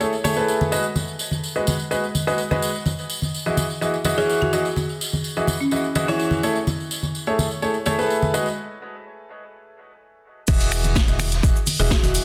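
A clear, woody upright piano riff, filtered, pumping and trailed by dub echo, leads this joyful, feel-good piano house excerpt at 126 BPM in E major over bright tambourine and congas, with a dry, rustic marimba melody entering at 4.2 seconds, a break at 8.6 seconds, and a drop at 10.5 seconds that brings in a hollow, organ-like FM bass, a punchy layered electronic kick, an overdriven analog drum machine with snare, hi-hat, shaker, finger snaps and crash, and a mid-forward street-band drum kit with a high-tuned snare set in the background, all within a studio reverb and a dense, heavily limited modern master.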